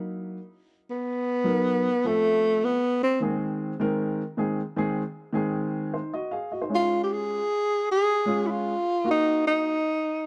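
A dark, woody upright piano opens this uplifting soul excerpt at 103 BPM with a swung feel in Db major. At 0.9 seconds a breathy tenor saxophone enters up front with a whispered subtone, vibrato and scooped notes, carrying the joyful melody in an intimate jazz style, then returns at 6.7 seconds as the piano carries on beneath it. A moderate spring reverb gives the recording a gentle halo.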